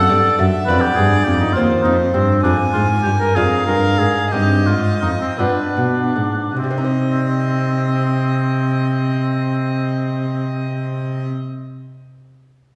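In a straight 6/8 at 49-69 BPM counted in dotted quarters, this grave, solemn baroque-style sonata movement in C minor, cut from a longer piece, sets a violin melody of gut-string tone and light vibrato above a close-miked oboe second line, a bright, delicate fingerpicked lute with double strings, and a dark, bowed period-style cello bass up front, the ensemble bathed in a wet scoring-stage reverb heard from further back as the tempo slows from 1.6 to 6.6 seconds, where a C minor chord opens the second section.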